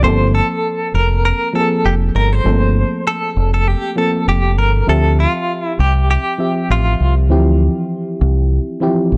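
Afrobeats in D minor at 99 BPM with a light sixteenth-note swing, this mellow, hypnotic excerpt from a longer piece sets a twangy, bright clean electric guitar melody with tremolo up front until 7.1 seconds over a dark FM electric piano with a noise layer and fast, decaying attack, anchored by a round, punchy deep dub fingered bass, all moving from Gm11 to Dm11 in a dry, gritty hardware recording with digital ambience.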